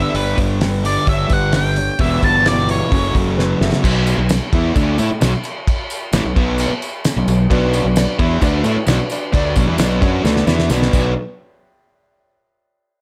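Brooding and gritty, this classic rock excerpt moves at 131 BPM in a straight 4/4 in B minor, cut from a longer piece. It opens with an up-front octave-fuzz lead guitar solo, dark and distorted, that plays only until 3.1 seconds while a dark, mellow concert grand piano sits in the background beneath it. Two picked rhythm guitars carry the riff throughout, a sludgy overdriven one and an overdriven semi-hollow guitar with a hollow-body tone, both set back in the mix. A growly, punchy fuzz bass with overdrive and an up-front, cloth-damped, thuddy drum kit with dark cymbals, a fat snare and a tight kick drive the groove, with drum fills closing the first two sections. After the chords move from G through Em and F#m to Bm at 3.8 seconds, a jingly tambourine joins softly, and the piano returns at 7.5 seconds to add a fill before the chords drop out at 11.2 seconds. The whole performance sits in a small room with light reverb.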